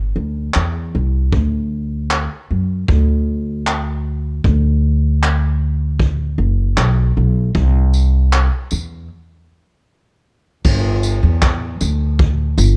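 Carefree and sunny, this short acoustic pop cut moves at an unhurried 77 BPM in straight 4/4, centered in G major. An upright bass opens at 0.0 seconds, plucked pizzicato on gut strings with a woody, thumpy tone that sits up front. A vintage brush drum kit joins at 0.5 seconds, played with brushes in a small room, its punchy kick and dark cymbals joined by tambourine, handclaps and a crash cymbal. The kit has a mid-forward, rolled-off top that keeps it close and intimate beside the bass. A break arrives at 9.1 seconds before a new section begins at 10.6 seconds. The dry, dark production, with little reverb, gives the whole a cozy, close-up character.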